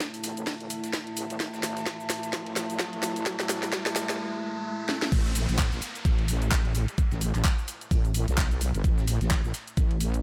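A dark analog pad opens this gritty, aggressive bass house excerpt at 129 BPM, holding deep, moody sustained chords on an A5 with lush chorus and sidechain pumping. With it come a knocking electronic kick, re-recorded in a small room and placed up front, and an overdriven garage kit whose cracking snare, handclaps, cabasa, hi-hat and crash also sit forward. Underneath, a very quiet, dusty soul sampler-style kit adds a compressed hi-hat, ride and medium-tuned snare. A heavy, saturated wobble bass enters at 0.2 seconds, a sawtooth-and-sine unison sound between G1 and C2 that is detuned and resonant, with its own sidechain pumping. The first half is a build-up with drum fills and an electronic riser, and the drop arrives at 5.1 seconds. The sixteenths swing at 58%, and a light digital reverb surrounds the mix.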